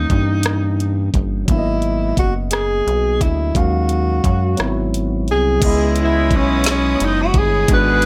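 A breathy, whispered tenor saxophone carries the melody from the first moment in this yearning, sultry slow R&B, played in a six-eight lilt at 58 BPM in C# dorian over a barky tine electric piano heard through a combo amp and a rubbery, bouncy square-wave bass with a resonant filter pluck. A smooth, produced drum kit sits up front with a knocking kick, woody snare, metallic hats, rim clicks and crash. At 5.6 seconds, as the chords settle on C#m9, a lush bowed string section enters in the background beside tight, vintage-sounding horn stabs, all wrapped in light reverb.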